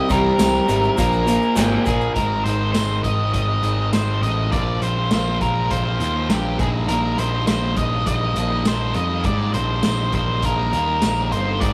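Wistful yet upbeat, this indie rock excerpt in Eb major moves at 102 BPM in a straight 4/4, with a dark, octave-fuzz lead guitar carrying the melody over a bright overdriven guitar riff and an up-front fuzz-drenched picked bass. In the opening 2.1 seconds, a lo-fi, slightly broken-up guitar through a small old amp adds its own riff, a brassy analog pad sits barely audible underneath, and a grainy tube shaker rattles in the background. A vintage acoustic drum kit with a punchy kick, medium-tuned snare, hi-hat and tambourine pumps in a small room with a rolled-off top, and the whole take has the rough, tube-saturated feel of a rehearsal-room recording as the chords move from Cm7 and Bb7sus4 to Ab, Bbsus2 and Eb6/Bb.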